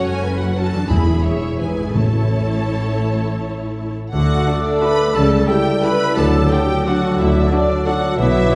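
A lush orchestral sound heard from further back in a reverberant scoring stage frames this festive, elegant classical passage in 3/4, moving with rubato at 158-196 BPM from A major into D major at 4.1 s. Violins carry a smooth vibrato melody over a soft second violin line, an expressive, distant viola accompaniment, ringing harp arpeggios, and a bass of dark, woody cellos with double basses, while articulate, dry timpani strike with hard mallets. At 4.1 s a pure silver flute, a background clarinet and a mellow bassoon join, and a very quiet, roomy French horn section adds sustained chords from 4.5 s.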